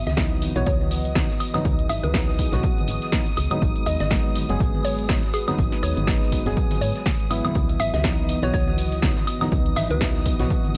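A dry, punchy electronic kick drives this deep, moody deep house excerpt at 122 BPM in 4/4, with a 57% swing on the 16ths, joined by a punchy analog drum machine on hi-hat, snare and woodblock, low-tuned congas heard distant in a large room, and a natural acoustic kit's hi-hat and snare sitting in the background with sidechain pumping on its hats. In C# minor, a woody, round FM bass pumps beneath a very quiet analog pad holding sustained chords, shimmering vintage violins from a string machine, and hollow, dark organ stabs carrying chorus and delay, as the harmony moves from C#m11 to G#m7 at 3.6 seconds and back at 7.6 seconds. On top, a bouncy, detuned square-wave pluck plays the melody through chorus and tape echo until 10.3 seconds, all set in light reverb.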